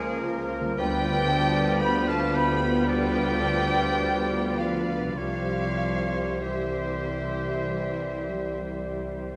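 Muted, veiled violins carry the melody in this melancholic, yearning fragment of a slow romantic orchestral movement, their bowed vibrato sitting high between E5 and B5 while a second violin line sounds further back. Around them, an airy, distant flute ensemble doubles the melody's register, a bright oboe sings a second line with light vibrato, and a very quiet clarinet with a smooth top adds another. Dark violas, a present bassoon and a tight, mellow French horn section fill the middle with accompaniment and sustained chords, while a ringing, thumb-plucked harp spins soft arpeggios until 9.0 s. The bass rests on close cellos, bowed double basses and a clear, vintage-toned tuba, with the cellos and tuba kept very quiet. The tempo drifts freely between 47 and 59 BPM in 4/4, tuned to A4 = 436 Hz, and the harmony moves from Bbm/Db through G7/D to settle on C at 5.2 s, all bathed in a wet scoring-stage reverb.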